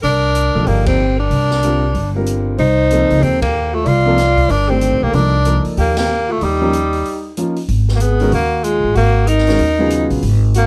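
A clear tenor saxophone carries the melody up front in this cool, spiritual modal jazz excerpt, its soft attack, vibrato and scooped notes giving the line a relaxed swing. Behind it, a breathy alto saxophone adds a mellow second line that sits distant and roomy in the background. The upright bass is woody and thumpy, its gut strings plucked close to the listener, while an open acoustic drum kit works hi-hat, ride, kick and snare quietly, with dark cymbals, a high-tuned snare and a boomy kick. A warm concert grand piano joins at 0.6 seconds with natural accompaniment and deep bass, as the harmony moves from Cm11 to Eb7 to G#13sus4. The band hits three accents together, pauses for a short break at 7.0 seconds, and moves into a new section at 7.7 seconds, all heard in a dark, moderately reverberant studio sound.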